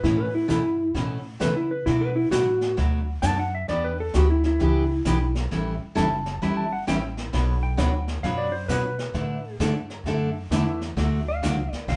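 A swinging, down-home western swing excerpt at 132 BPM, where a clean lap steel guitar sings a slide line up front over a bright, full-bodied picked acoustic guitar, a thumpy pizzicato upright bass and a distant, roomy brush kit with a softened top end. An electric slide guitar solo runs through the whole twelve seconds over changes moving from Aadd9 through Bm7, Em7 and A7 to a closing D, and a clear upright piano with audible action noise appears only briefly at 10.5 seconds. The band sounds like it is playing live in one room, with a short, wet studio reverb and a dark, vintage top end.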